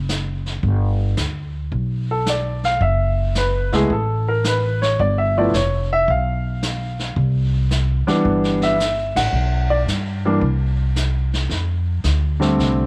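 Sophisticated and swinging, this jazz piano trio excerpt at 110 BPM opens on woody pizzicato upright bass with a vintage brush kit of dark cymbals and a tight kick sitting mid-forward in a small room, before an up-front grand piano enters at 2.1 seconds over chords like F#m11, G13 and Cmaj9, the band hits an accent at 9.1 seconds, and the piano takes a solo from 11.5 seconds in light reverb.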